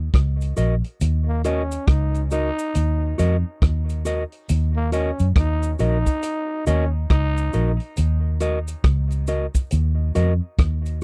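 A slow roots reggae groove in 4/4 with a swung sixteenth-note lilt sets a hypnotic, meditative mood in this short excerpt cut from a longer piece, resting on a single minor chord throughout. A vintage drum kit with a punchy kick, hi-hat and rim click sits up front, its acoustic small-room sound natural and rolled-off at the top, while a dark, round, foam-muted fingered electric bass anchors the low end just as prominently. A cabasa adds a close, dry shake deep in the background. From 0.6 seconds a mellow, clean electric guitar plays fingered accompaniment with a dub echo trailing its notes. A raspy, growling trombone carries the second line between 1.3 and 7.8 seconds, brilliant and gritty with vibrato, its phrases also sent through dub echo. The whole recording has a dry, close 1970s studio character with little reverb.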